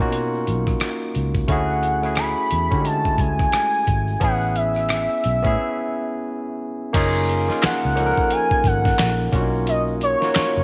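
A relaxed, sensual neo-soul groove at 88 BPM swings its sixteenths in F# major, as a dusty, compressed sampler-style drum kit with thumpy kick and fat snare sits under a dark, foam-muted fingered bass and a barky, lightly overdriven tine electric piano up front, with a distant tube shaker and finger snaps in the background, before a smooth, detuned portamento lead with chorus and vibrato glides in at 1.5 seconds over lush maj9 chords, a break at 5.6 seconds and an echo-chamber reverb in this excerpt from a longer piece.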